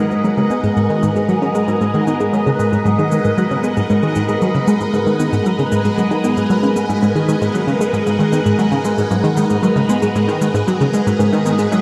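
A dark, warm production set in a wet concert-hall reverb opens this 11.8-second slice of cosmic, mysterious space music, a sequencer-driven ambient piece at 115 BPM in straight 4/4, resting on a single G#m7 chord in G# minor. Up front, a tight, driving sawtooth sequenced riff sits low, beside lush, vintage string-machine chords that are phased and treated with ensemble chorus, while a round, tine-like thumb-piano-style FM pluck spins gentle arpeggios through chorus, cassette tape and tape echo. High above, a bubbling, resonant stepped-filter texture holds a bright D#5 in its own reverb, and electronic cabasa and percussion blips enter at 0.1 s in the background, fading in across the excerpt.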